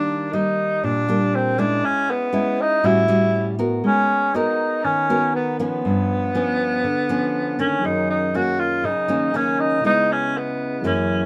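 A breathy tenor saxophone carries the melody over fingerpicked nylon-string guitar from the start of this romantic, sophisticated bossa nova excerpt at 120 BPM, its subtone whispering with soft, scooped notes and vibrato in an intimate, roomy jazz voice. The guitar sits up front with a full-bodied, fresh-stringed classical tone and the odd finger squeak, moving through rich chords such as Ebmaj7, A13 and G7#11. At 7.8 seconds a barky, lightly overdriven tine electric piano joins in the background, all under a light reverb.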